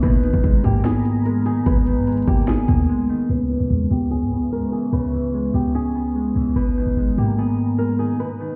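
Melancholic yet hard-hitting, this half-time trap excerpt at 147 BPM opens with an overdriven electronic kit of hard-clipped kick, sharp snare and bright hats that drops out at 2.8 seconds. A clean, boomy sine 808 sits up front beneath a ringing, fingerpicked Celtic harp, while a dark flamenco guitar carries the fingerpicked melody with audible finger squeak through delay and a low-pass filter. A detuned sawtooth pad with chorus lingers in the background, and a filter sweep runs from 3.3 seconds as the G#madd9 and C#m7 chords unfold, all heard muffled as if through a wall into a stone room.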